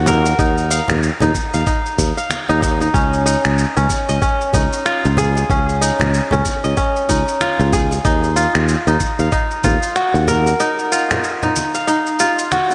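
A crisp, ringing kora plays up-front fingerpicked arpeggios with delay and slapback echo in this mystical, meditative organic downtempo piece in Eb minor at 94 BPM with swung 16ths, over a growly fretless electric bass with sidechain pumping that sustains until 10.5 s, a gritty, tape-warm electronic kick that thumps until 9.8 s, compressed shaker and finger snaps, and very quiet hard-handed congas and bongos, all moving between Ebmadd9 and Dbadd9 inside a lush hall reverb that gives a big arena sound.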